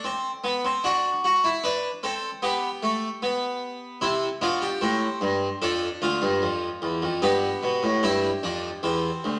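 Joyful and stately, this short cut from a longer baroque-style four-part fugue in C major moves at a straight 75 BPM in 4/4, its solo Flemish-style harpsichord sounding plucked, full and brilliant with three sets of strings, placed up front in a reverberant stone room, spanning D2 to B4 as the harmony passes from Am through D7, G, C, Dm and G7 to settle on C at 8.8 seconds.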